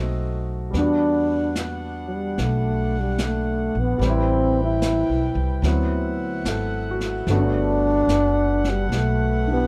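Studio ambience surrounds this romantic, late-night jazz ballad, an excerpt in G major at 73 BPM with a swung 4/4 feel. A breathy, close-miked trombone carries the melody up front with vibrato from 0.8 seconds. Beneath it are a woody pizzicato upright bass, an intimate grand piano with audible action noise and long sustain, and a mellow saxophone section holding tight sustained chords. Distant, roomy brushes on snare and hi-hat join at 0.7 seconds, as the harmony moves from B7b9 through Em9, Am9 and D13 to Gmaj9.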